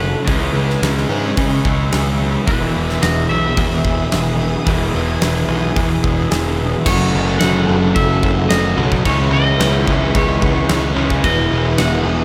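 A twangy, scooped lead guitar with digital delay carries a wistful melody from the start, over a swirling, warbling string machine drenched in ensemble chorus and phaser, very quiet bright arpeggios from a direct-recorded clean guitar, and an up-front fuzzed, overdriven picked bass. Behind them sit two crunchy overdriven guitar riffs, one trailed by reverse reverb and the other double-tracked, plus a thick, very quiet fuzz guitar riff, all pitched low in the mix. A huge arena drum kit with a fat snare and punchy kick enters at 0.3 seconds, pushing this dreamy shoegaze rock fragment through a minor-seventh chord shift at 6.9 seconds.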